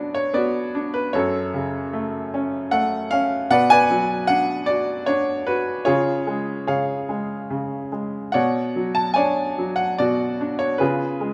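Melancholic and reflective, this short classical passage cut from a longer piece features a solo upright piano in a lyrical, rubato 3/4 at around 75 BPM, tuned to A4 = 439 Hz. The piano sounds bright and woody with a short sustain, sitting up front in a light reverb as it spans F#2 to A5. Its harmony moves through B minor, F# minor and C#, touching a Bmadd9 before settling on C#7 near 10.8 seconds.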